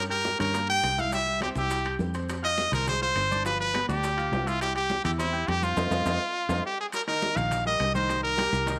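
A brilliant, forceful trumpet leads this driving, danceable salsa at 207 BPM, up front with vibrato and scooped notes over a clear, intimate grand piano whose action noise is audible and a dark, round fingered electric bass. Very quiet congas, bongos and ringing metal-shell timbales sit beneath, with grainy maracas in the background, all in a light small-room ambience. A band accent lands at 5.8 seconds with a drum fill just after, before the harmony shifts at 6.9 seconds in this cut from a longer piece.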